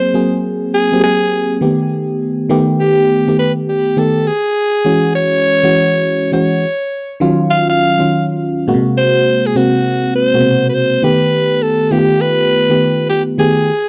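This dry, close recording has the intimate, upfront sound of a 1970s studio, with little reverb around the two players. It is a short cut from a longer R&B piece, moving at 102 BPM in 4/4 with a swung sixteenth-note feel that gives it a bouncy, slick mood. A raspy alto saxophone carries the melody as a pop-style solo, its edgy, gritty, punchy tone close-miked and sitting up front from 0.0 to 13.9 seconds. Beneath it, an FM electric piano supplies the accompaniment with a glassy, bell-like attack, a noise layer and quickly decaying notes, thickened by chorus. The harmony cycles through chords such as Ab9, Baug7, E69 and Ebm9 before returning to Ab9 and Baug7 near the close.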